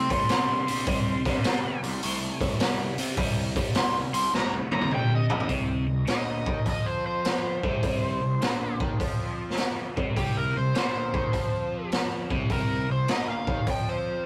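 Gritty and brooding, this excerpt of blues rock power trio with a southern rock edge moves at 103 BPM in 4/4 with a swung eighth-note feel, centered on C minor. An overdriven slide guitar carries the melody with a bright, fingered tone and tape echo, opening with a slide solo over a C5 power chord for the first 5.5 seconds. Beneath it, a crunchy, double-tracked overdriven guitar picks out a low riff colored by a phaser, while a fuzz-laden picked electric bass growls in the background. The raw garage drum kit sits up front with a high-tuned snare, punchy kick, hi-hat and toms, its saturated, mid-forward sound and rolled-off top giving it a gritty edge, and a drum fill from 4.3 seconds leads into the second section, where the harmony settles onto C minor. Light reverb and the saturated feel of a rough rehearsal room bind the trio into a raw, unpolished whole.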